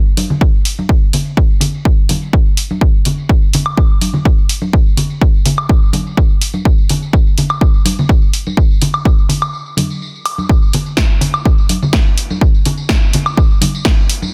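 An up-front electronic kick drum with a punchy, tape-warm analog character anchors this joyful, feel-good house excerpt in a straight 4/4 feel. Around it, an analog drum machine supplies hi-hat, a punchy snare and woodblock, sitting lower in the mix with its own tape-warm tone. Tambourine and congas add an acoustic, close and dry layer played with hard hands, treated with sidechain pumping and a low-pass filter that softens their top end. A filter sweep runs across the drums for the whole passage, and a short break arrives between 9.5 and 10.5 seconds before the groove resumes. The digital ambience and a dense, heavily limited modern master keep the whole mix loud and tightly packed.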